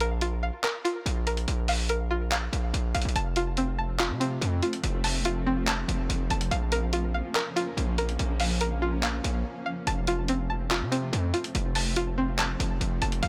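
A half-time trap groove at 143 BPM comes from a muffled, compressed, pitched-down lo-fi drum kit of handclaps and hi-hat, sitting up front beside a heavy, saturated 808-style bass whose distortion gives this hip hop excerpt a hard-hitting, aggressive weight. Over it, a twangy, string-like resonator pluck spins bright arpeggios through chorus, tape echo and a low-pass filter, moving from Bb5 to F, Bbm and back to F. At 3.9 seconds a cloudy, detuned granular pad drifts in with blurred, evolving sustained chords that deepen the eerie mood, and a short break at 9.4 seconds leads into the repeat under light reverb.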